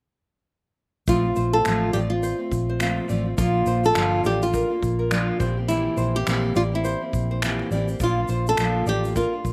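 Carefree and easy-going, this swung acoustic pop excerpt moves from F through Bb and C, with a warm, up-front flamenco guitar carrying the melody, finger squeaks and all, over a bright, full-bodied fingerpicked steel-string dreadnought touched with slapback echo. A dark, round, foam-muted vintage electric bass and an unplugged kit of finger snaps, punchy kick and shaker played with bundle sticks hold the groove from 1.1 seconds. A small nylon-string guitar adds fingerpicked arpeggios with its own slapback from 1.4 to 9.3 seconds, all in a dry, open-air sound.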